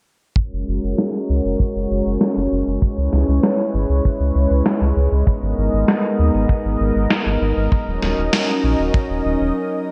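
Synthwave at 98 BPM in a straight 4/4, this cinematic, driving fragment of a longer piece is tuned to A4 = 439 Hz and moves through F#add9, C#m7, G#madd9 and D#m7. A soft-attack, detuned sawtooth pad holds sustained chords from 0.4 s, its smooth, long-release tone thickened by chorus, sidechain pumping and shimmer reverb. Beneath it, a round, deep analog bass built from sawtooth and sine tones plays sustained notes with a fast attack, while a filter sweep runs across the bass throughout. A dry, tight acoustic kick with a rolled-off top sits up front, joined at 1.0 s by a sampler-style electronic snare carrying gated reverb and a tape-warm character from being re-recorded in a small room. A moderate plate reverb and bright 1980s-style digital production give the mix its gloss, and a brief break arrives at 9.6 s.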